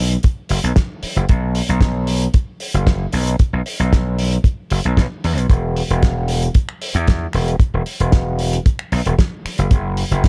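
A bright, overdriven slap bass sits up front in this feel-good, sunny nu-disco clip cut from a longer piece, joined by a tight, dry kick drum and a damped 70s kit of finger snaps, hi-hat and fat snare in a small room, all within a dark production that has little reverb.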